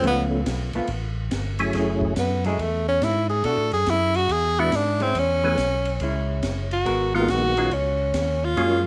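A breathy, close-miked tenor saxophone solo with tape echo leads this smoky, soulful soul jazz organ trio fragment at a swung 140 BPM in F# dorian, heard from the first beat alongside a mellow percussive tonewheel organ melody through a slow rotary speaker and chorus vibrato, a dark, clean hollow-body electric jazz guitar accompaniment, a fat tonewheel organ bass with key click and its own slow rotary, and a small-room acoustic drum kit with dark cymbals, a high-tuned snare and a boomy kick, all in light reverb.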